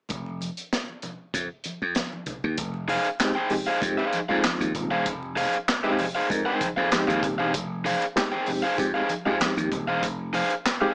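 This driving, sly funk excerpt moves at 97 BPM in a straight 4/4, beginning with a crunchy breakbeat kit of punchy kick, high-tuned snare, hi-hat and handclaps, its saturated, gritty sound carrying a rolled-off top and sitting up front. A growly, bright slap bass plays alongside it from the start, punchy and direct, while thin-skinned, hard-handed congas sit in the background with a vintage, band-limited tone. Over the opening, unaccompanied by chords, the groove holds until the harmony settles on Fm7 at 2.6 seconds in F minor. An overdriven, picked electric guitar enters at 2.9 seconds to supply accompaniment in the upper register, followed at 3.2 seconds by reedy electric piano stabs, lightly overdriven and colored by tremolo through built-in speakers. The whole mix has a light reverb and a small-speaker character that gives it a compact, lo-fi edge.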